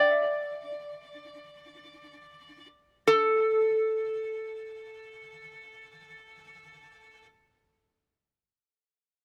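In free time that slows over the first 3.0 seconds, this dreamy, languid Hawaiian fragment features a solo metal-body resonator slide guitar, played with fingerpicks and sitting up front, its metallic, nasal acoustic tone touched by slapback echo and captured dry in an open-air outdoor setting.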